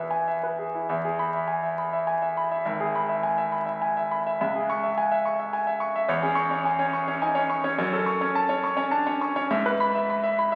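A classical virtuoso piano study in E major, this short excerpt from a longer piece moves in a rubato 6/8 at about 69 dotted-quarter beats per minute, with a sparkling, brilliant mood. A solo concert grand carries everything from 0.0 to 10.6 seconds, ranging from G#1 up to C#6, its tone clear and polished with a deep bass and short sustain. The instrument sits up front and present, while a wet recital hall reverb with a 1.7-second decay surrounds it. The harmony moves from E through E/G# and C#m, settling onto C#m/E and F#m before returning to E/G# near 9.5 seconds. The sound carries the crackle of a very old 78 rpm record, giving the brilliant playing an antique surface.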